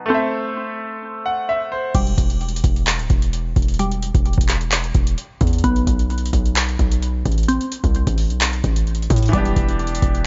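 Dark, hard-hitting trap in E minor at 130 BPM with a half-time feel, this excerpt opens on a glassy wavetable pluck playing arpeggios through chorus, low-pass filtering and tape echo, alongside a bright, worn concert grand piano that plays a fill from 1.0 to 1.9 seconds. At 1.9 seconds a punchy 808-style bass with a fast attack and a booming analog drum machine arrive, its overdriven deep kick, metallic hats, handclaps and crash sitting up front, while the piano returns at 9.3 seconds over chords moving from Am through Em, Asus2 and Em7. The mix is dry and dark-toned, with little reverb and a rolled-off top end.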